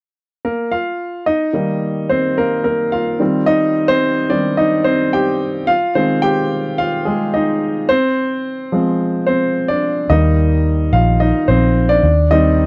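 A dry, close recording in a 1970s studio style frames this hopeful, uplifting pop excerpt in Eb major at 109 BPM, where a clear, polished baby grand piano carries the music alone from 0.4 seconds, moving through Eb, Cm/Eb, Ab and Fm chords. At 10.1 seconds a dark, foam-muted fingered electric bass joins up front with a round, punchy tone as the harmony settles on Eb, before the passage turns to Cm and is cut off at 12.7 seconds.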